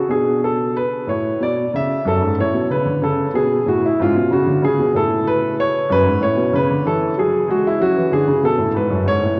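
A solo concert grand piano with deep bass and an open, up-front tone carries this introspective, flowing baroque-style classical suite movement in 6/8 at a rubato 62 BPM, settling into F# minor at 5.9 s within a short fragment cut from a longer piece, all bathed in a wet church reverb and the worn, warbling pitch drift of old cassette tape.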